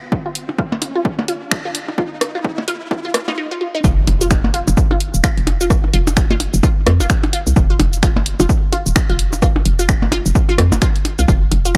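A swung 4/4 groove at 129 BPM drives this clinical, hypnotic minimal techno excerpt. An overdriven, punchy analog kick sits up front, and an analog drum machine adds finger snaps, hi-hat and shaker; both were re-recorded in a large room. Overdriven electronic percussion blips and a rim click, treated with tape echo, fill in around them. Above, a squelchy, resonant pluck built from detuned pulse and sawtooth waves plays a bright riff between Eb4 and F4 with phaser, lush chorus, analog delay and sidechain pumping, while a filter sweep on a synth arpeggio sound moves through the build-up over an Ebsus2 chord and a riser sounds in the background. After a brief break at 3.4 seconds, the drop arrives at 3.8 seconds with an impact and the entry of a hollow, bouncy FM bass, fast in attack and mellow in tone, spanning Eb1 to F2 on an F5 chord with tube saturation and sidechain pumping. The recording is dry and gritty, with a hardware character and a high-pass filter.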